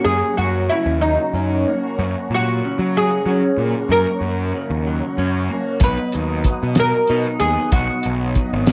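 A woody, plectrum-plucked oud carries the melody up front with a slapback echo in this trippy, kaleidoscopic psychedelic rock excerpt in a straight 6/8. Beneath it, a lo-fi, slightly broken-up electric guitar riff runs through a phaser, a round, fuzz-drenched picked bass holds the low end, and a flute-like tonewheel organ sustains soft chords in the background through a slow rotary speaker and chorus vibrato. At 5.8 seconds the harmony moves to a new chord as a dry, thuddy cloth-damped drum kit with a fat snare and tight kick comes in, joined by grainy maracas, all set in light small-room reverb.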